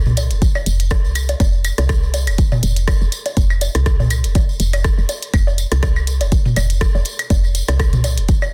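A dense, heavily limited modern master with digital ambience frames this short, sparse and cool cut of minimal techno, lifted from a longer piece and set in 4/4 with a light 16th-note swing. A punchy, layered electronic kick sits up front with a touch of small-room ambience, while a woody, round FM bass, dark and soft with a fast attack that then decays, pumps against it from low in the register. A minimal click kit supplies clicky hi-hats and a rim click, its snare softly clipped and placed in a small room. Electronic toms, bongos and woodblock carry a tape-warm, analog character, re-recorded in a small space, and a jingly, saturated acoustic tambourine sits far back in the mix. The whole passage holds to a single section, with the bass opening at the very start and the kick arriving at 0.4 seconds.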